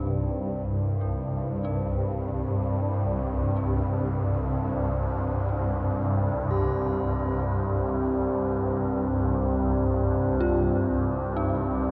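Dark ambient drone, unsettling and desolate, drifting in free time through this short excerpt cut from a longer piece. Up front sits a swarming, tense drone in the low register, detuned and granular, evolving as it sustains with a long release and its own reverb. Behind it, a deep, moody pad holds sustained minor chords, its sawtooth and sine layers wave-folded and ring-modulated, then softened by chorus. Further back, an eerie, inharmonic FM bell warbles through a narrow arpeggio, its fast attack decaying into chorus, phaser and delay with a vintage, mellow colour. At 6.5 s a bronze singing bowl enters, struck with a wooden striker, ringing bright and airy with slow beating that adds a meditative, metallic shimmer. The dreamy mix is soaked in a lush hall reverb and carries a cassette-tape haze.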